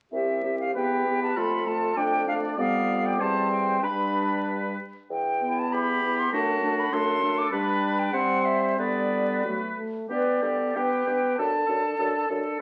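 A lively, graceful classical-period wind quintet movement at 89-101 BPM in a rubato 2/4, settling into G major from 5.1 s, where an airy silver flute with soft-edged vibrato carries the melody up front, an oboe enters at 0.8 s with a distant, roomy second line, clarinet and a punchy, close-miked French horn fill in accompaniment, and a mellow bassoon holds the bass, all heard through moderate large-studio reverb and the crackle of a very old 78 rpm record in a short cut from a longer piece.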